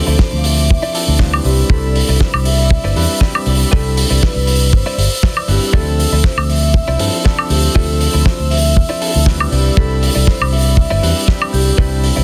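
Up front, a bright, punchy fingered electric bass with an envelope filter drives this groovy, feel-good nu-disco excerpt at 119 BPM in 4/4, with a light swing on the 16ths in C major. A tight, dry acoustic kick sits forward beside it, while a damped 70s drum kit adds a fat snare, hi-hat and woodblock, both touched with studio reverb. A mellow vibraphone played with soft mallets carries the melody, its metallic ringing tone shaded by slow motor vibrato and tape echo, over a bell-like tine electric piano whose clean accompaniment pumps with sidechain compression and carries slapback echo. In the background, a compressed, scooped clean electric guitar recorded direct picks a riff through analog chorus, vintage 12-bit sampler grit and slapback echo, with a fill from 0.7 to 1.7 seconds. A dark chamber string section holds soft-attack sul tasto chords with light vibrato, also pumping, as the harmony moves between Dm9 and Cmaj9 in a small room, all pressed into a dense, heavily limited modern master.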